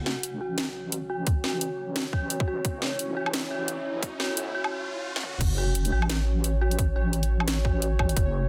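Dark and cinematic, this half-time drum and bass excerpt opens on a build-up where a deep, soft wobble bass and a moody, detuned analog pad pumping under sidechain sit beneath an eerie, inharmonic synth bell arpeggio run through chorus, phaser and tape echo, with a background riser climbing through the first 5.4 seconds. An up-front, layered, overdriven kit of cracking snare, bright hats, crash, toms and woodblock plays from the start, joined by an overdriven electronic kick at 1.3 seconds. After a brief break and a drum fill, the drop arrives at 5.4 seconds. A pulsing, tempo-synced gated texture slips in behind from 5.9 seconds, all under a dense, heavily limited master with light reverb.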